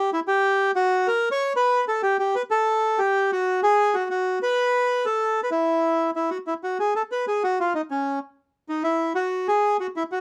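A rubato 3/4 pulse at 190 BPM carries this elegant, playful tango fragment, played by a solo bandoneon across its full 10.2 seconds in a range from C#4 to C#5. The bandoneon's reedy voice sits up front with a boxy small-room character, and the music shifts into a new section at 6.5 s. The dry, close 1970s-style studio sound carries a moderate touch of reverb.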